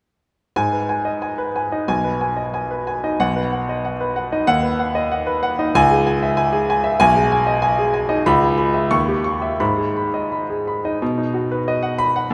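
A clear concert grand piano plays alone from 0.6 s in this passionate, stormy classical virtuoso study in G# minor, taken from a longer piece, moving at 93 BPM in 2/4 with a free rubato feel; its natural, up-front tone has deep bass and short sustain and spans B1 to C#6, while a wet church reverb lingers around it as the harmony travels through G#m, B and C#m to a D#7b9, returns to G#m at 9.6 s and then moves to B at 11.0 s.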